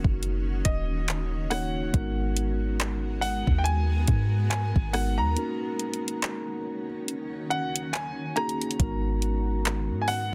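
Sensual and late-night, this contemporary R&B excerpt in G# minor sits at a slow 70 BPM in 4/4 with a swung sixteenth feel, moving between D#m7 and G#m9 chords, with a break from 5.4 to 8.8 seconds. A mellow tine electric piano and a cloudy, granular pad with built-in reverb and sidechain pumping fill the harmony, while a round, sine-like 808-style bass and an up-front electronic drum kit of soft kick, hi-hat, handclaps and rim click anchor the groove. From 0.7 seconds a clear concert grand piano carries the melody through a delay, all within a dry, dense and heavily limited modern master.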